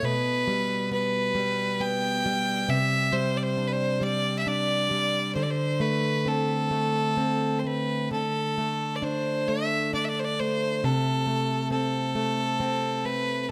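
A single fiddle carries the melody from the opening moment, its clear, intense tone touched with light vibrato and an airy quality to the bow, though a slightly boxy character colours the sound. This is a Celtic slow air in three-time, played rubato so the pulse breathes freely, and the mood is one of longing with a haunting edge. Beneath it, a picked steel-string acoustic guitar with fresh strings and a parlour-sized body provides the accompaniment, sounding throughout the 13.5 seconds of this fragment cut from a longer piece. The harmony drifts from G over B through Csus2 and an open D chord before settling on A minor over C at 10.8 seconds. Both instruments sit up front in a close, detailed recording, with a light reverb lending a little space around them.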